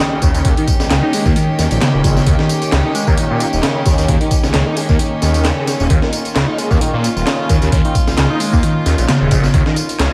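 Swung 16th-note breakbeat at 132 BPM in 4/4 drives this funky, energetic excerpt, where a gritty, pitched-up sampler-style drum kit with thumpy kick and high-tuned snare joins electronic handclaps and tambourine at 0.2 s alongside a swirling, thick detuned saw bass with phaser and tube saturation, while a screaming, guitar-like overdriven synth lead riff with distortion, phaser, chorus and delay rides over distant, floating chamber strings holding sidechain-pumped sustained chords on Eb7, all set in light digital ambience with vinyl crackle.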